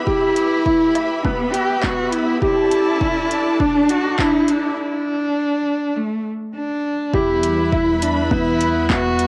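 Melancholic and hypnotic, this short piano and strings electronica cut at 102 BPM in E minor sets a soft, felt-muted upright piano riff beside an expressive, boxy solo cello melody with vibrato and portamento up front, while a lush, woody string section holds sidechain-pumped sustained chords. A rumbling, detuned saw bass sits low in the background, and a very quiet riser runs from 0.3 to 4.8 seconds during the build-up. A punchy, overdriven electronic kick joins a deep house kit of handclaps, metallic hi-hats and woodblock, with cassette-tape grit on the piano, strings and drums and a small-room reverb colouring this home recording before the drop at 7.1 seconds.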